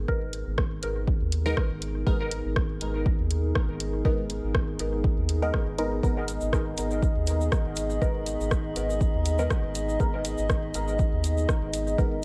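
A punchy, up-front electronic kick drives this hypnotic, meditative dub techno excerpt at 121 BPM in G# minor, joined by a deep house kit of hi-hat and rim click, a round, soft sub bass, and a dark, nasal analog pad holding a G#madd9 chord with chorus and sidechain pumping. A muted, detuned chord stab colors the groove through phaser and dub echo, while a grainy, bright egg shaker enters at 6.0 seconds. An eerie, metallic inharmonic drone with chorus and its own reverb lingers in the background from 7.7 seconds, set in an otherwise dry mix.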